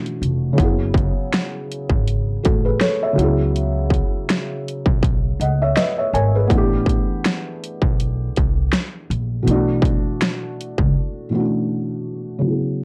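Lo-fi hip hop at 81 BPM in 4/4, with a light swing on the sixteenths, this hazy, nostalgic fragment of a longer piece drifts through rich minor-ninth and seventh chords, moving from Bm9 through F#m9, C#m7 and A7sus2 before settling back on Bm9. A felt-muted upright piano carries the accompaniment up front, its thick felt giving a soft, dark, intimate tone, with the mechanical action audible beneath the muffled notes. An electronic dubstep drum kit sits forward as well, pairing a distorted kick and a huge, layered snare with bright hi-hats. An upright bass, plucked pizzicato on steel strings, adds a woody low end with a touch of tube saturation. The whole recording wears a worn, warbling cassette character with drifting pitch and light reverb. The drums and bass drop out at 10.9 seconds, leaving the piano alone in a short break, and the piano stops at 12.8 seconds.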